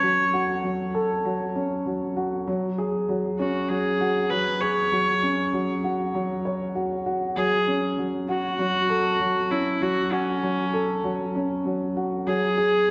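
A viola and a grand piano begin together at the start of this cinematic, intimate piece of electronica, which is cut from a longer work and moves at 98 BPM in a straight 4/4 in F# minor, tuned to A4 = 442 Hz. The single bowed viola carries the melody between C#4 and C#5 with a gut-string, period-style tone that is reedy yet smooth at the top. Beneath it the grand piano plays a riff from F#3 to C#5, its sound dark, mellow and boxy. Both instruments sit up front and share a digital delay, while a wet recital-hall reverb of 1.4 seconds surrounds them and nothing rises above 7.9 kHz. The harmony moves from F#m to C#sus4 at 2.5 seconds, returns to F#m at 7.4 seconds, and touches a rootless C#sus4 at 12.3 seconds before the cut at 12.9 seconds.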